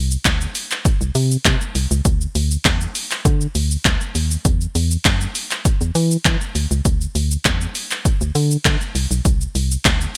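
Bright, 1980s-style digital production with light reverb frames this driving, energetic dance-pop excerpt at 100 BPM in a straight 4/4. A hollow, dark, organ-like FM bass with a fast attack and decaying notes sits up front from the start, pumping under sidechain compression. A tape-warm analog drum machine enters at 0.1 seconds with a punchy kick and snare, handclaps, hi-hat and shaker, with a short room on the snare, clap and hats.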